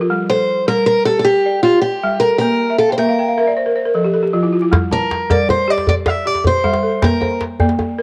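Hypnotic and reflective, this short fragment of West African string and xylophone music moves in 12/8 with a straight feel. A woody, buzzing balafon played with hard rubber mallets carries arpeggios through the whole span, its dry, band-limited tone sitting up front, and it breaks into a fill from 2.7 to 4.7 seconds. Just after it begins, a picked steel-string acoustic guitar with a boxy parlour character carries the melody close to the listener. Both of these parts have a cassette-tape colouring. At 4.7 seconds a tight, cracking djembe, struck with hard hands in a small room, joins up front as the minor harmony returns after a brief chordless gap. A moderate spring reverb and a layer of vinyl crackle give the home-recorded sound a worn, intimate air.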